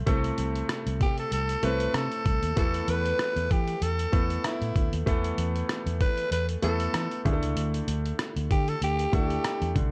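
1980s-style pop at 96 BPM with a light sixteenth-note swing, nostalgic and uplifting, where a raspy, gritty alto saxophone enters at 1.0 seconds with scooped notes up front over a clear, polished grand piano, a dark, foam-muted fingered electric bass, and a muffled, pitched-down sampler-style drum kit of thumpy kick, hi-hat and rim click, all set in light digital reverb as the chords move from Am to Esus4 to Dsus2 in this short cut from a longer piece.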